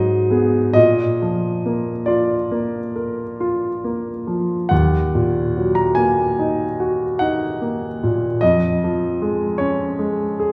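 A romantic classical nocturne for solo grand piano unfolds in Eb minor, its yearning, mournful mood carried by a slow 9/8 pulse of around 45-51 dotted-quarter beats per minute and a freely breathing rubato. The piano is the only voice, sounding from 0.0 to 10.5 seconds across a span from Eb2 up to Bb5, with a smooth, vintage tone that sits up front. The harmony moves from Abm7 to Bb, settles on Ebm at 4.7 seconds, and then shifts to Db/F near the close of this short passage cut from a longer piece. A wet recital hall reverb surrounds the instrument, and the listener seems placed further back in the room, which lends the playing a sense of distance and space. The tuning sits slightly above standard pitch, at A4 = 441 Hz.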